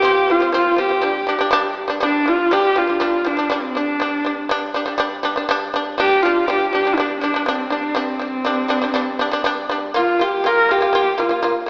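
A husky, bowed horsehead fiddle carries a solemn, windswept Mongolian folk melody with vibrato and portamento, set close and up front over buzzing, plectrum-plucked shamisen arpeggios, both ringing through a reverberant recital hall with a thin AM-radio tone and faint mains hum in this short fragment of a longer piece.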